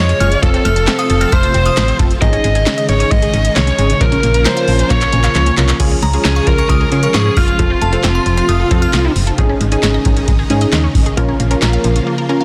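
A dense, heavily limited modern mix sits in a moderately lush hall reverb, framing a nostalgic, wistful synth-pop fragment in Db major at 134 BPM, cut from a longer piece. An up-front electro analog drum machine drives it, with a deep kick, punchy snare, metallic hats, handclaps and crash, and a drum fill from 4.9 to 5.8 seconds leads into the second section. A solid, round FM bass with a dark, decaying tone anchors the low end. A funky polysynth comp plays mellow sawtooth and pulse-wave chords with chorus, while a glassy FM bell line with tape echo sits in the background, alongside a squelchy, resonant blip pluck whose phased arpeggios echo. A shimmering vintage string machine holds sustained violin chords. Up front, a biting, overdriven electric lead guitar carries the picked melody with tape echo until 9.1 seconds, and a brief silence closes the fragment from 12.1 seconds.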